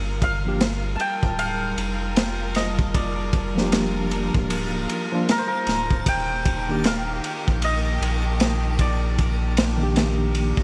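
Trip hop in G minor at 77 BPM with a 16th-note swing, cinematic and melancholic, this excerpt rests on a crunchy, gritty breakbeat kit with a tight kick and dark cymbals, a round, deep sine sub bass, and lush bowed symphonic strings sustaining chords that move from Gm7 to Ebmaj7 at 6.1 seconds. A hammered santur carries the shimmering, ringing melody through tape echo, while a bright, clean tine electric piano enters at 0.5 seconds with harmonic tremolo and its own tape echo. From 1.3 seconds a reversed, detuned, granular texture swells dreamily in the background, all set in a bright 1980s-style digital production with light studio reverb and vinyl crackle.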